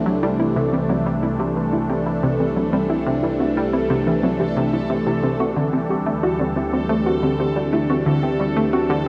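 Luminous and expansive, this 9.1-second cut of ambient, sequencer-driven space music moves at 90 BPM in C lydian, with a swirling, phased and chorused analog pad holding sustained chords up front over a warbling, vintage analog drone bass. A sawtooth-edged analog pluck plays a chorused, delayed riff up front, while a soft, dark round pluck plays detuned arpeggios through a filter sweep in the background, and a bubbling stepped-filter texture fades in with random resonant filter steps. The dreamy mix is soaked in a lush hall reverb as the harmony shifts from C to D7sus4 at 5.4 seconds.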